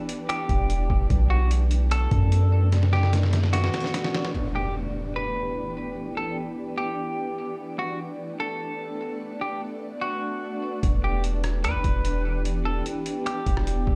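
Atmospheric cloud-rap hip hop in E minor at 148 BPM with a half-time feel, melancholic and hazy, where a shimmering, ethereal pad holds sustained Em7 and Bm7 chords throughout while a clean, fingered electric guitar with digital delay carries the melody from 0.3 seconds, a gritty, pitched-down sampler-style drum kit with a thumpy kick and finger snaps sits up front alongside a deep, sine-toned 808-style bass; the bass drops out midway through a drum fill and the drums fall away once the fill ends, as an electronic impact hits at 4.3 seconds, and both return at 10.8 seconds, all in a big, reverberant bare-room sound cut from a longer piece.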